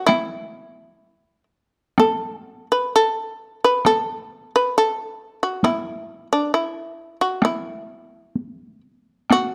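This is Japanese traditional chamber music, calm and austere in mood, moving in a loose rubato 2/4 at roughly 61-68 BPM. The shamisen carries the melody from the opening moment, its plectrum-plucked, fretless strings sounding bright and buzzing with a percussive edge as it stays between D4 and B4 in an E suspended pentatonic mode, tuned to A4 = 442 Hz. A taiko ensemble joins at 0.1 seconds, struck with hard sticks and sitting close and up front alongside the shamisen. Close, detailed miking and a light reverb keep the sound intimate and clear. The passage runs to 9.5 seconds as a short excerpt cut from a longer piece.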